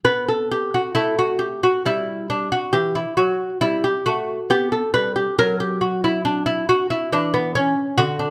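A solo lute, bright and delicate with fingerpicked gut double strings, some doubled at the octave, sits up front in this short fragment cut from a longer baroque-style dance in 3/4 at 68 BPM. The mood is grave and solemn, and the rubato phrasing moves from a Gmaj13 chord to E minor, with brief unharmonized moments between them and after. Close, detailed microphones capture the instrument in light reverb.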